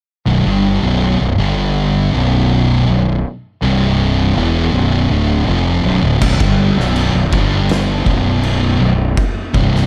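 A straight 4/4 pulse at 81 BPM drives this heavy, sludgy stoner and doom metal passage in B minor, cut from a longer piece, as two dark, picked fuzz guitars, one up front and one in the background, grind out a riff over Bm, G5, B5 and C5 with a growly, overdriven fingered electric bass, until an oversized low-tuned acoustic drum kit with a fat snare, punchy kick and crash cymbal enters at 6.2 s, gritty and saturated in a bright stone room, with light reverb and some lossy compression artefacts in the mix.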